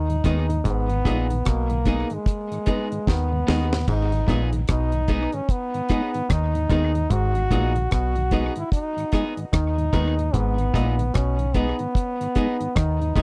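Roots reggae with a meditative, laid-back mood, cut from a longer piece and sitting on a single minor chord, where a clear, up-front trombone carries the melody with light vibrato and tape echo. Underneath, a round, foam-muted fingered electric bass and a dry, tight drum kit with a high-tuned snare sit forward in the mix, with a drum fill from 3.1 to 3.9 seconds. In the background, a stringy clav riff, woody upright piano stabs, and a flute-like tonewheel organ with key click, chorus vibrato and slow rotary speaker fill out a close, dry 1970s-style studio sound. A compressed, slightly broken-up picked electric guitar with tape echo joins them.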